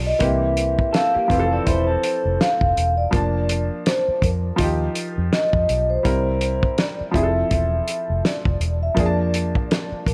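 A mellow, ringing vibraphone with soft mallets, slapback echo and fast motor vibrato carries the melody in this smooth, romantic excerpt of lush 1970s-style soul at 82 BPM in F major with a gentle 16th-note swing, over clear, short-sustain baby grand piano chords, a dark, round, foam-muted electric bass and a dry, muffled drum kit with a fat snare that enters at 0.2 seconds, while a slightly broken-up, compressed electric guitar riff plays only until 2.9 seconds, in a lightly reverberant studio.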